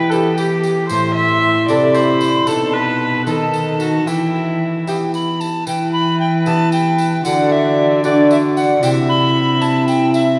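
Classical renaissance-style consort dance in E minor, rustic and solemn at 76 BPM in a straight 6/8, where a bright, airy alto recorder with crisp chiff and expressive vibrato carries the melody over a rich, distant gut-string viola second line, a delicate fingerpicked lute in the background, a mellow trombone, an up-front reedy cello bass and a faint jingly tambourine from 0.1 seconds, all bathed in a wet church reverb as the harmony moves from Em through Am and B7 to D and C in this excerpt cut from a longer piece.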